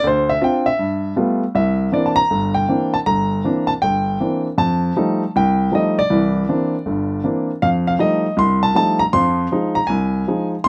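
A warm grand piano opens alone, sitting up front as it moves through Dm7 to G9 in the first 1.6 seconds. This short solo jazz excerpt, cut from a longer piece, has a swinging, playful mood, with the eighth notes given a light swing in common time. The piano then settles onto C9 and shifts between that chord and F9, before turning to Fm7 at 9.1 seconds. Its range runs from deep bass notes up into the bright upper register of the keyboard. A moderate studio reverb adds a short, natural sense of room around the playing.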